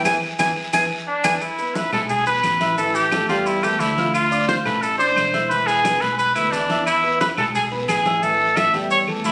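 A breathy, chiff-edged jazz flute with vibrato opens this fiery, danceable salsa fragment at 176 BPM, soloing over a band accent until 1.4 seconds, as a punchy, vintage-toned trumpet with scooped notes takes the lead up front from 1.1 seconds, backed by a boxy concert grand piano with audible action noise, a bright, amped picked electric bass, low-tuned congas, very quiet woody claves, a raspy guiro and grainy maracas, captured on a phone in a large studio room with moderate reverb and compression.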